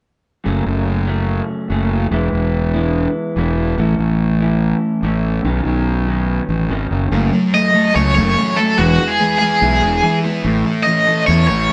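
The excerpt opens with an electric guitar through a small old amp playing a riff, its tone slightly broken-up and compressed with a touch of spring reverb, joined almost at once by a round, fuzzy fingered bass that sits up front with overdrive. This is a wistful, jangly rock piece at 144 BPM in a straight 4/4, moving through F#m, E, A and Badd9 before cycling back. At 7.1 seconds a sludgy distorted guitar adds a second, darker riff, and at 7.5 seconds a biting overdriven guitar takes the melody with tremolo, bright and prominent in the mix. The band sounds as though it is playing live together in one room, with light reverb around the whole performance. It is cut from a longer piece and ends at 11.7 seconds with all four parts still sounding.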